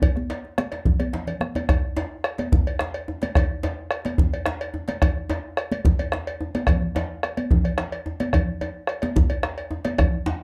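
A dark production in a small, reverberant room frames this festive, powerful West African drum ensemble excerpt at 145 BPM in 12/8, where a deep, close bombo sits up front beside a medium-tuned djembe played with hard hands, ringing high-tuned congas and a metallic cowbell, and a drum fill from 1.1 to 1.7 s leads into a new section that carries on to the end.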